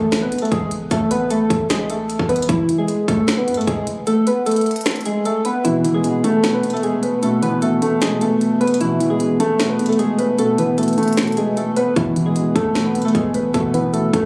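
Captured on a phone in a room with a club-like reverb, this short cut from a longer hip hop and trap piece has a brooding, melancholic mood and a half-time feel. Soft, round electric-piano-like synth keys carry the melody up front from start to finish, their gentle, wave-folded tone coloured by chorus, a low-pass filter and tape echo. An electronic trap kit runs underneath with a hard-clipped kick, sharp snare, crisp hats and finger snaps, though the kick drops out from 4.1 until 12.0 seconds. A deep, boomy 808-style bass sits in the background at the start, stops with the kick, and returns at 12.0 seconds. At 5.6 seconds a dark, boxy concert grand piano joins up front, its low-passed deep bass thickening the suspended harmony that moves from Asus2 to Esus4 and back.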